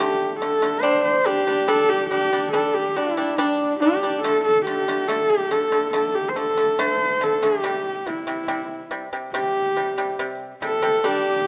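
A husky, dark horsehead fiddle sings a close, intimate melody with light vibrato, airy bowing and gliding portamento over bright, dry, percussive pipa arpeggios from the first moment, both parts up front in a reverberant recital hall. This brief cut from a Mongolian folk piece moves at a slow 70 BPM in 4/4 through D5, G5, D5 and C harmonies, carrying a vast, proud mood.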